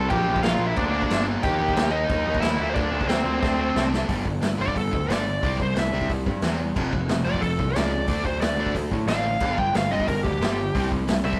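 Upbeat and energetic, this punk rock excerpt puts a dark, smooth overdriven lead guitar with tape echo up front beside a growly fuzz bass and a gritty, punchy garage drum kit in a pumping small room, while a bright overdriven rhythm guitar and a tight distorted guitar churn out riffs in the background, a drum fill at 3.4 seconds leading into a lead guitar solo from 4.1 seconds, all captured in a rough rehearsal-room sound with tube saturation and light reverb.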